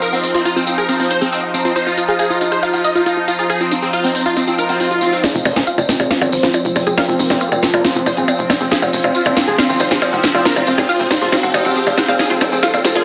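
Psychedelic trance at 138 BPM in F minor, alien and hypnotic, built on an up-front techno drum kit with a cracking snare and smooth hats alongside a jingly tambourine, a bright phased supersaw stab melody, a detuned unison pluck riff set in the background, a bubbling resonant stepped-filter texture holding chords and a very quiet deep ambient pad, until a background swell at 4.5 s leads into a build-up at 5.2 s with a riser, filter sweeps on the synths, a drum fill, a punchy nasal sequencer bass and a faint wobbling vowel-sweep bass, all within a dense, heavily limited master.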